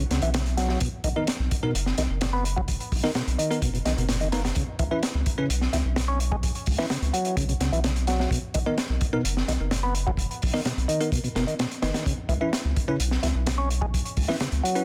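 A percussive tonewheel organ riff, lightly overdriven with key click and a coat of 12-bit sampler grit and delay, opens this raw, gritty breakbeat excerpt over a thick, saturated sub bass and a barely audible downlifter, with the crunchy drum kit arriving at 0.1 seconds. The drums sit up front at 128 BPM with a punchy kick, a high-tuned snare and hi-hat, their dark, rolled-off top giving a warm small-room character, while the harmony in C# dorian moves between C#m7, Bmaj7 and B. From 1.2 seconds a clean, bell-like tine electric piano adds bright stabs through analog chorus and delay, all glued together by light reverb and a dense, heavily limited modern master.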